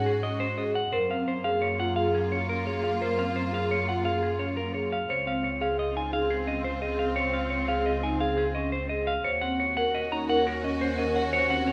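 A twangy, up-front clean electric guitar melody leads this hypnotic, propulsive stretch of minimalist classical pattern music at 173 BPM in 6/4, sounding throughout alongside mellow soft-mallet vibraphone arpeggios with medium motor vibrato, lush bowed symphonic strings holding sustained chords, and a rich, close chamber double bass section, all set in a recital hall reverb as the harmony moves from Ab7sus4 through Gbmaj9 and Dbmaj7 to Ebm7 at 9.2 seconds.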